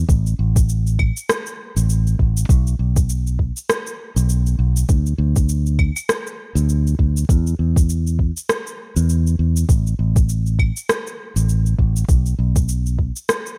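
A rough home-demo sound with digital ambience frames this blissful sunset chillout excerpt, where a warm, direct fingered electric bass sits up front beside a soft, overdriven electronic kick, while a gritty electronic shaker, claves and rim click join from 0.1 seconds onward over a lightly swung sixteenth-note feel.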